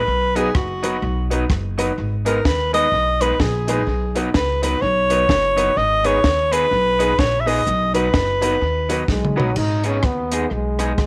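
Ska in G# minor at 127 BPM, driving and energetic with a swung feel, cut from a longer piece and moving between B and G#m in a small, lightly reverberant room. A breathy, close-miked alto saxophone carries the melody up front from the start, over woody pizzicato upright bass, a slightly broken-up lo-fi electric guitar, intimate upright piano stabs with audible action noise in the background, and a dry, punchy cocktail drum kit with dark cymbals and tape echo. As a drum fill begins at 9.1 seconds, a whispered trombone with vibrato takes the melody for the closing moments.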